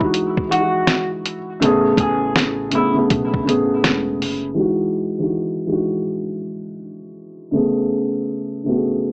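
A soft, felt-muted upright piano sits up front through this dreamy, nostalgic lo-fi hip hop excerpt in E major, moving between Emaj9 and Amaj9 chords at a relaxed 81 BPM in 4/4 with swung sixteenth notes. Its dark, boxy, intimate tone is colored by cassette tape and a low-pass filter. A compressed, pitched-down sampler-style kit of finger snaps, hi-hat, thumpy kick and fat snare shares the foreground. Early on, an electric guitar through a small old amp adds a brief fingered melody, its slightly broken-up, lo-fi sound softened by a low-pass filter and tape echo. A woody pizzicato upright bass with steel strings enters at 1.6 seconds after an opening break, and from 4.5 seconds the piano carries on alone under a filter sweep that begins at 4.6 seconds. The whole mix has a moderate studio reverb, and cassette tape, a low-pass filter and a small-speaker character color the entire sound.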